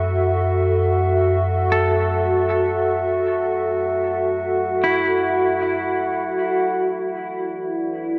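A warbling, nostalgic tape-like pad sits up front with detuned, sustained chords in this reflective, melancholic ambient passage cut from a longer piece, resting on a deep, ominous rumbling drone, while a glassy, ethereal glass harmonica hovers until 6.8 seconds and a clean semi-hollow electric guitar adds vibrato-tinged arpeggios through a diffuse delay from 1.7 to 7.1 seconds, inside a wet cathedral reverb as the harmony moves from F#m7 to E7(no3).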